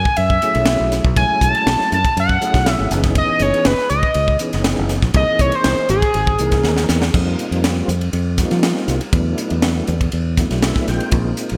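A straight, funky 4/4 groove drives this bright electric jazz fusion excerpt, cut from a longer piece. A crisp acoustic drum kit with a high-tuned snare, punchy kick, hi-hat, ride and crash sits up front in a pumping small room with gated reverb. A growly, direct fingered electric bass sits just as close. An overdriven synth lead carries the melody in a gritty, screaming, guitar-like voice with vibrato, then drops out at 6.9 seconds, just after a drum fill begins at 6.7 seconds. Underneath, a mellow, round tonewheel organ accompanies through a slow rotary speaker with light overdrive and chorus vibrato, and adds a fill of its own at 10.4 seconds. The harmony moves through suspended thirteenth and ninth chords and an altered dominant, all framed by a lush hall reverb and a bright 1980s-style digital production.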